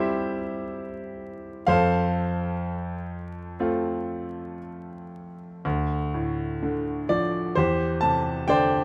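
A solo grand piano opens on a C chord and settles onto F at 1.7 seconds, setting a peaceful, tender mood in this lyrical classical fragment cut from a longer piece. The tempo moves freely between 56 and 66 BPM in 4/4, with a rubato feel that lets the phrases breathe. The piano is clear and slightly boxy, with a short sustain, and it sits up front. It spans from D2 in the bass to A5 in the treble. At 5.6 seconds the music turns from F major toward D minor, moving from Dm to Cadd9/E. Close, detailed microphones catch the instrument within a light reverb, and a vinyl crackle lends the recording an aged character.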